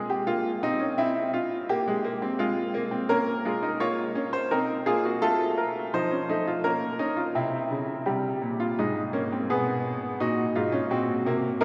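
Solemn and serious, this short cut from a longer piece is a baroque-style four-part fugue in the classical tradition, played by a lone baby grand piano at a measured 85 BPM in 3/4 time. The piano sounds bright and brilliant, natural in tone and placed up front, ranging from Gb2 up to Db5 across its 11.6 seconds. A cathedral reverb with a long 4.7-second decay surrounds the instrument, lending the counterpoint a spacious, churchly wash. The harmony moves through dark minor colors such as Bbm, Fm/Ab and Cm7b5, returning twice to C7 along the way. A second section begins at 7.4 seconds, turning toward Abadd11 and Db7/Cb before settling on Gb/Bb as the passage breaks off.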